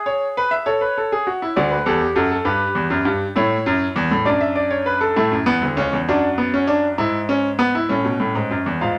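A bright, brilliant grand piano opens at once, playing alone through this short 9-second excerpt cut from a longer baroque-style four-part fugue in 6/8 at 66 BPM, with a straight, lively and elegant feel. Its open, up-front tone with short sustain spans C#2 to F5, moving through chords such as E/G#, A, D, Em and Bm/F# before settling on A near 7.9 seconds. A moderate studio reverb lends the piano a gentle sense of space.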